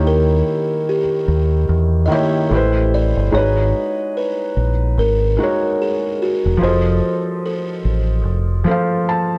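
A buzzing, woody kalimba carries the melody in this mellow, dreamy lo-fi hip hop fragment, its filtered tone bathed in plate reverb above a soft, felt-muted upright piano with audible action noise, itself filtered and plate-washed, which adds a brief fill at 8.7 seconds, while a round, dark dub-style fingered electric bass sits up front beneath a swung sixteenth-note feel and a light overall reverb.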